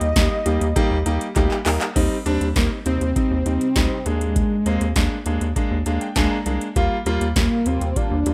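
A straight 4/4 pulse at 100 BPM from an up-front analog drum machine, with its deep kick, punchy snare, metallic hats, handclaps and crash plus a fill at 1.4 seconds, drives this wistful, bright synth-pop excerpt in Eb major, where a rubbery, hollow square bass holds the low end, a clear concert grand piano accompanies and adds its own fill at 5.6 seconds, and a thick, detuned sawtooth unison lead with vibrato and slapback echo carries the melody over chords moving from Eb to Gm7/Eb, in a dry, rough home-demo mix.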